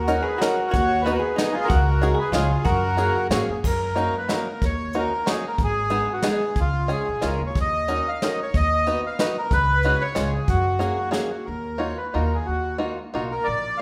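A bittersweet, whirling musette waltz excerpt, where an up-front reedy bandoneon carries the melody over woody pizzicato upright bass, a bright, twangy fingerpicked banjo up front, soft brushed drums with a punchy kick, and a dark, clean hollow-body archtop guitar that plays a background second line only until 3.3 seconds, all set in a moderate recital-hall reverb.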